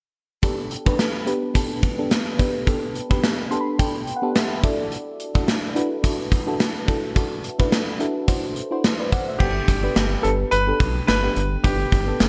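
A lightly swung 107 BPM groove in 4/4 from an up-front gated 80s drum kit drives this glossy, nostalgic 1980s-style pop clip, with tight kick, bright cymbals and a medium-tuned snare in a bright stone room, while a mellow FM electric piano, soft and round through chorus and phaser, carries the Gadd9 and Dadd9 chords and adds a fill from 3.2 to 4.9 seconds. At 9.4 seconds a clear, polished concert grand piano takes up a short melody and a rubbery, hollow square bass enters underneath as the harmony returns to Gadd9. The whole sits in light reverb with small-room ambience.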